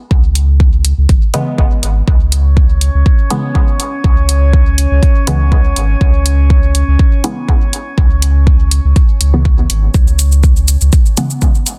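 Hypnotic and deep, this dub techno fragment is cut from a longer piece and rides a steady, straight 4/4 pulse. A layered, up-front electronic kick anchors the groove alongside a round sine sub bass that sits forward in the mix and pumps through sidechain compression. Muted, detuned sawtooth and square-wave chord stabs pluck through a filter with a short decay, colored by phaser, cassette-tape grit, sidechain pumping and dub echo, and a filter sweep moves across them through the whole passage. An analog-flavored electronic hi-hat and shaker, tape-softened in tone, keeps the upper rhythm ticking. From 2.5 s to 10.0 s a calm, glassy texture of drifting sine overtones fades in slowly and lingers with chorus and its own reverb, floating quietly above the groove. The digital ambience and dense, heavily limited modern master keep the sound tight and loud.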